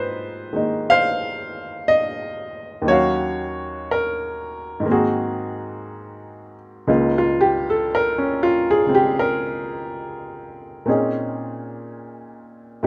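Jazz ballad with a romantic, late-night mood, carried by a solo upright piano that plays throughout the 12.9-second excerpt with a gentle swing. The piano sounds woody and smooth with a vintage character and short sustain, sitting up front in a light reverb. Lush extended chords such as Ab69, Db6 and Bbm11 shape its unhurried progression, shifting into a new section at 6.9 seconds.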